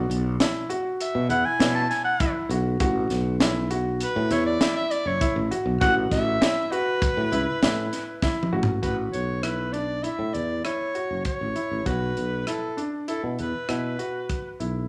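A large-studio sound with moderate reverb frames this bright, driving progressive instrumental in 5/4 at 99 BPM in A major, where a close-miked soprano saxophone with a soft attack and classical-style vibrato solos from 1.0 s over a crisp, polished fusion kit with a punchy kick and high-tuned snare, a growly, sustaining fretless electric bass, and intimate grand piano arpeggios with audible action noise, while a drum fill at 8.2 s leads into the next section as the harmony moves between B5 and Asus2.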